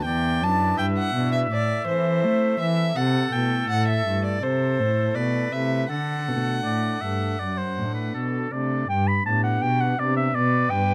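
This classical, baroque-style sonata movement with continuo has a radiant, flowing character in a straight four-beat metre, and it is an excerpt from a longer piece. A clear oboe carries the melody from 0.1 seconds, sung with light vibrato in a classical solo manner and placed up front. Also up front, a single bowed violin plays the second line with a rich, reedy gut-string tone and light vibrato in period style. Underneath, one bowed cello supplies a dark bass with a smooth top to its period gut-string sound, while a pipe organ on thick foundation stops sits in the background with romantic voicing. The harmony passes from Em7 through Am and D before arriving on G at 8.9 seconds, and the close, detailed recording adds only light reverb.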